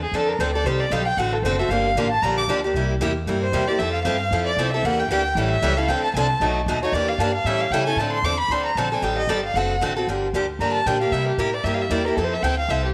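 A wet echo-chamber reverb surrounds this excerpt of acoustic string swing in the jazz manouche style, lending a roomy glow to a bittersweet, fiery performance. At a brisk 229 BPM in 4/4 with a swung eighth-note feel, the piece sits in D minor, tuned to A4 = 435 Hz. A single bowed violin stands up front and solos throughout, its rich tone shaped by vibrato and expressive portamento. A picked steel-string parlour guitar enters at 0.1 s with bright, boxy accompaniment, finger squeaks audible on the strings. Beneath them, a pizzicato upright bass with gut strings gives a woody, dark, thumpy pulse. The harmony moves through minor-key changes such as Dm7, Am7b5, D7, Gm7, C7 and Fmaj7 across two matching sections, the second beginning at 8.0 s.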